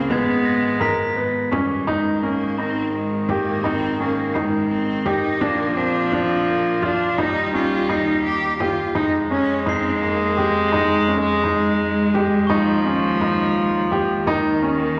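A bowed cello carries the melody from the first moment, its rich, focused tone touched with vibrato yet set at a distance, while a viola played sul tasto traces a dark, floating second line up close, with a soft attack and a smooth top. This is contemporary chamber music in 5/8 at 170 BPM counted in eighths, straight in feel, hopeful yet restless, and cut from a longer piece. A clear grand piano sits up front with arpeggios, a boxy double bass, bowed with vibrato, holds the bass line, and a glockenspiel struck with soft plastic mallets adds a very quiet, bell-like, ringing shimmer high above. A frame drum played with soft hands enters at 0.1 seconds, acoustic and close yet kept in the background. The harmony opens on Abm, shifts to Abadd9 at 1.9 seconds, and passes through Bb, Eb and Fm7 before returning to Eb, the ensemble bathed in a wet scoring-stage reverb.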